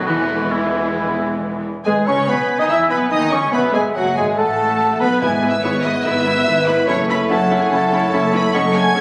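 Heard through a phone in a reverberant room, this short excerpt from a dramatic, fast romantic orchestral movement carries a stormy, urgent mood with a rubato feel. A lush, rich first violin section with vibrato carries the melody, while a clear, close-miked oboe and a second violin section in the background add supporting lines, over a smooth viola section, distant cellos and an even, bowed double bass section. A mellow, roomy French horn section sustains chords from the start. At 1.9 seconds a pure, crisp-edged flute and a dark clarinet join with further lines, and a bassoon fills in the accompaniment. Soft-malleted timpani are barely audible between 5.2 and 5.8 seconds, and the harmony moves from E through E/G# and B5/A to F#m7.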